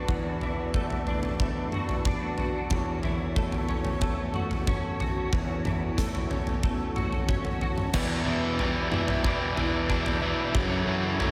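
A biting, overdriven guitar riff cuts in up front at 7.9 seconds, launching the build-up in this cathartic, cinematic post-rock passage in straight 4/4, cut from a longer piece. Beneath it, a compressed twelve-string electric guitar picks clean arpeggios through ensemble chorus and diffuse ambient delay, while a reedy, breathing pedal harmonium holds mellow sustained chords and a growling fingered bass with overdrive sits in the background. A huge arena drum kit with bright cymbals, a fat snare, a punchy kick, crash and toms stands up front, and the dreamy mix is soaked in huge ambient reverb.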